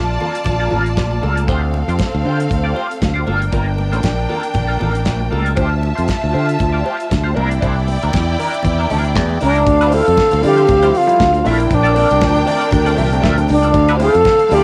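Disco with a sultry, driving mood and a lightly swung 4/4 pulse, cut from a longer piece and recorded at home on cassette in a small room with light reverb. A bright, up-front fingered electric bass and a clear, lush studio string section play from the start, soon joined by a clean, picked electric guitar through wah, ringing high-tuned congas kept very quiet, and a damped 70s drum kit with a fat snare, tight kick and hi-hat under a rolled-off top. The chords move through minor ninths, sevenths and elevenths, passing through a major seventh in the later section before returning to a minor eleventh. At 9.4 seconds an airy, bright, wooden-headed alto flute with tongued vibrato takes the melody, sitting prominently in front of the mix. A lightly overdriven, barky tine electric piano arrives at 9.7 seconds, tucked into the background through a combo amp as the second section begins. The cassette tape colours the strings, guitar, drums, flute and electric piano, lending a hazy period character.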